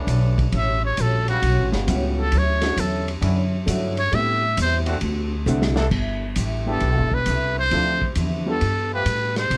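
Brassy and joyful, this short big band swing passage at 134 BPM in D major, shifting to G major at 5.9 s, features a buzzy, breathy trumpet with metal mute carrying an intimate solo melody up front, over a woody, thumpy pizzicato upright bass, a bright picked steel-string acoustic guitar with finger squeak, a muffled, lo-fi vintage drum kit with dark cymbals and a punchy kick that plays a fill from 5.5 to 5.9 s, a boxy upright piano with short sustain, and a tight, clear trombone section holding sustained chords, all in light reverb with close, detailed miking.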